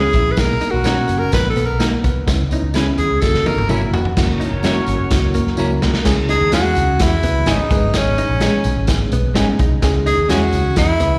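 Uptempo 1960s-style soul at 127 BPM, warm and uplifting, where a breathy, close-miked tenor saxophone solos up front over reedy electric piano with fast tremolo, a dark hollow-body jazz guitar riff, clean semi-hollow guitar stabs, a round foam-muted bass, a crunchy, saturated breakbeat kit with drum fills, jingly tambourine and barely audible ringing congas, while a mellow horn section adds a second line from 4.2 to 5.8 seconds and slapback echo marks the saxophone, piano, guitars, tambourine and horns, all heard as a live gig through the venue's PA in a recital hall.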